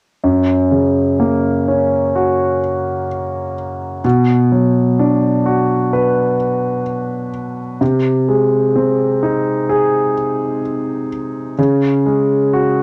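In a straight, unhurried 4/4 at 64 BPM, this tender, heartfelt pop fragment in F# major features a single clear concert grand piano, sounding intimate and up front with audible action noise, deep bass and long sustain, and colored by cassette tape character in a wet, close booth ambience as it accompanies through F#, Bm, G#/B# and C#sus4 from 0.2 to 12.8 seconds.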